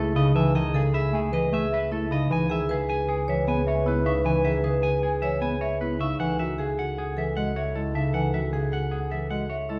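Hypnotic and urgent, this short cut from a longer piece of minimalist classical pattern music moves at 154 BPM in 5/4 with a straight feel, set in C# minor. A bright, clean, picked electric guitar carries the melody, while an airy, straight-toned alto flute with a wooden head sits in the background with a tongued second line. A marimba played with medium hard mallets and a delicate, bell-like celesta, slightly out of tune and boxy, spin arpeggios above a punchy, smooth-topped bass clarinet accompaniment. Up front, a single bowed double bass holds a low C#2 with focused, rich vibrato. The harmony shifts from Amaj9/C# to C#m7 at 2.3 seconds and F#m9/C# at 6.2 seconds over the steady bass note, all heard from further back in a large studio with a wet reverb.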